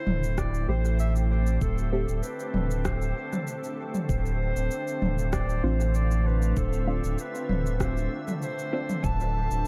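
Ambient dub at 97 BPM in D dorian, spacious and deep, where a distant, roomy clarinet carries a classical-style melody through dub echo over a pure, calm organ-like pad with ensemble chorus, a round sine sub bass sits up front, a tape-warm electronic kit of cabasa, rim click and toms echoes alongside a deep kick in the background, and a muted, gritty filtered chord stab with phaser flickers behind, all moving from Am7/D to Dm7 across this short cut from a longer piece.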